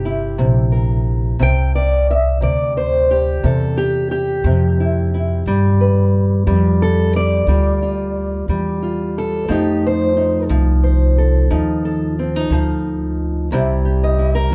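Acoustic country blues with a swaggering, gritty mood in a straight 12/8 feel, this excerpt features a fingerpicked steel-string parlour guitar carrying the melody as a solo throughout, its dark, boxy tone sitting up front with audible finger squeak. A pizzicato upright bass plays alongside, woody and up front, as the harmony moves from C7 to G7 at 5.5 seconds and F7 at 9.5 seconds before landing on C. The pair sounds as if heard from further back in a small room with moderate reverb, and the recording carries lossy compression artefacts.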